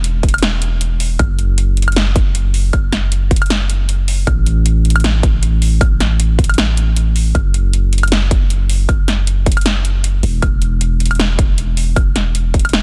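Bittersweet and emotional, this short future bass cut rides a half-time, lightly swung groove in 4/4, where a deep, mellow 808-style bass with sidechain pumping sustains low tones under a punchy layered electronic kick and a big-room dance kit of punchy snare, metallic hi-hats and woodblock, all kept dry and up front in a dense, heavily limited master.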